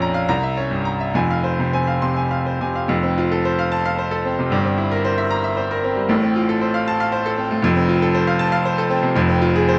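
Passionate and stormy, this short cut from a longer classical piece is a virtuoso piano study in F major, moving in a flexible rubato at roughly 68-79 beats per minute in dotted quarters of 6/8. A single bright grand piano carries everything from 0.0 to 9.8 seconds, ranging from F1 up to C6 with a brilliant, open tone and long sustain, placed up front. The opening section darkens quickly, passing from C7b9 into F minor within the first second or so. At 2.9 seconds a second section settles onto F major and moves through C7/G and F/A before a late turn back to F minor at 9.2 seconds. A moderate reverb from a large studio wraps around the instrument and lends the sound a sense of space.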